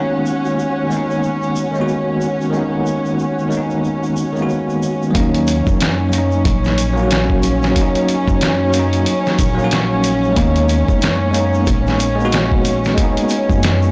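A blown-out, overdriven recording in a small room with light reverb carries this dark, brooding trip hop fragment at 92 BPM in Eb minor, swung on the sixteenths. A bell-like tine electric piano, up front with tremolo and tape echo, provides accompaniment over sustained soft-attack sul tasto string chords and an egg shaker, while a flickering, grainy texture sits in the background until 5.2 seconds. At 5.1 seconds a gritty, pitched-down sampler-style drum kit arrives with a thumpy kick, joined at 5.2 seconds by a woody pizzicato upright bass colored with tube saturation.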